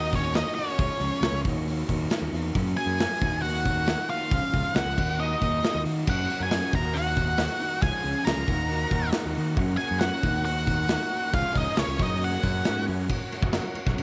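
Classic rock with a sunny, swaggering strut at 137 BPM in F# major, this 14-second excerpt opens with a dark, fuzzed-out lead guitar carrying the melody up front with slapback echo, shadowed by a second fuzz line an octave lower in the background, over a crunchy, double-tracked overdriven guitar riff and a growling, overdriven fingered bass. A punchy acoustic rock kit with bright cymbals drives the groove alongside a jingly, very quiet tambourine, while the chords cycle through D#m, C# and F# before landing on F#add9 and F#. At 6.1 s a very quiet, shouting tonewheel organ with key click and slow rotary speaker enters on sustained chords, and a moderate echo-chamber reverb lends the small room some bloom.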